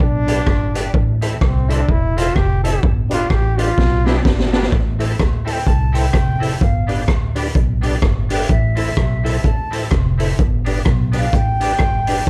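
Swung eighths drive this mischievous ska groove, built on a gritty garage drum kit with a boomy kick and high-tuned snare, woody pizzicato upright bass, clean picked electric guitar and key-clicking tonewheel organ stabs on a slow rotary speaker, while a brilliant trombone with light vibrato leads until 4.7 seconds, a drum fill closing its solo, before an airy, tongued wooden flute takes the melody from 5.5 seconds, with trombone, flute, guitar and organ all carrying slapback echo in a dark, small-room mix.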